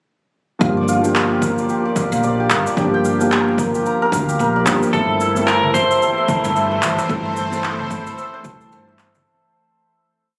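A bright, shimmering santur rings up front with arpeggios over a mystical, meditative organic downtempo groove in G dorian at 111 BPM, with a swung sixteenth feel, as a felt-muted upright piano adds mellow, boxy held chords with syncopated pushes and audible action noise, pumping through sidechain and a digital delay. A round, dark fretless electric bass plays a dub-style line through analog chorus beneath a punchy, overdriven electronic kick and a layered shaker-and-handclap beat, while a clean lap steel guitar enters at 4.9 seconds with slide call phrases through tape echo, and a very quiet, crisp darbuka joins at 5.4 seconds. A tense, nasal bowed-like drone swells in with slowly shifting chords at 6.2 seconds before the piece fades out from 6.4 seconds, all set in a lush hall reverb with the compressed sound of a phone recording in the room.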